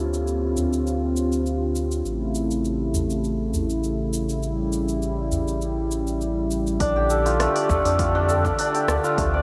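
Soaked in a huge, dreamy reverb, this mystical, earthy organic downtempo excerpt sets a detuned, warbling analog pad with chorus and sidechain pumping over a round sine sub bass, a meditative bronze singing bowl, smooth deep house hats, cabasa and rim clicks, and a small background udu, until at 6.8 seconds the bowl falls silent as the shimmering, hammered santur arpeggios return with tape echo and a punchy electronic kick joins in.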